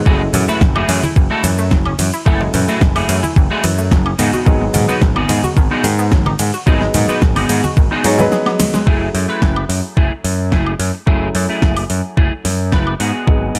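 A thumpy, sampler-style electronic kick sits up front in a straight 4/4 at 109 BPM, joined by a layered, overdriven pop kit of fat snare, metallic hats, ride, shaker and woodblock, with soft-handed, low-tuned congas tucked in the background. This short nu-disco cut in F# dorian has a sensual, groovy mood, moving between F#m9 and G#m7 chords. A growly, overdriven picked bass drives the low end prominently, while a clean, picked electric guitar plays a riff through analog chorus and tape echo. A dark, worn grand piano with audible action noise and short sustain supplies pumping accompaniment, and a round analog pluck with a fast attack and filter sweep spins chorused arpeggios in the background. After a break and drum fill at 8.3 seconds, the pluck and congas drop out at 8.8 seconds, leaving the rest of the band to carry the groove in a dry, close-sounding mix.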